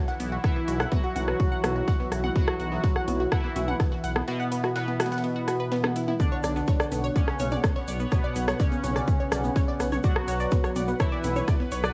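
Melodic techno with a hypnotic, dramatic mood, built on a punchy up-front electronic kick, metallic house hats with rim clicks and toms, a gritty pitched-up sampler-style breakbeat layer of ride and snare in the background, a deep, rumbling detuned saw bass with tube saturation, lush unison pluck arpeggios through analog delay, a juicy, warbling resonant polysynth melody with tape echo, and an evolving sub-octave pad holding sustained chords as the harmony moves from Esus2/B to Bmadd9, while a grainy tube shaker joins at 6.2 s and a cassette-tape haze softens the mix.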